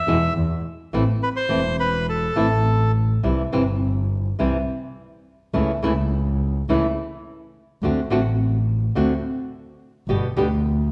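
A sultry, dramatic tango excerpt in a flexible rubato feel opens with a reedy, close-miked bandoneon carrying the melody for its first 2.9 seconds, while a single bowed double bass, earthy and biting with light vibrato, anchors the low end throughout and a dark, fingerpicked flamenco guitar supplies accompaniment, all set up front in a moderate recital hall reverb as the harmony moves from A minor into C major at 3.2 seconds and on through D7 to G.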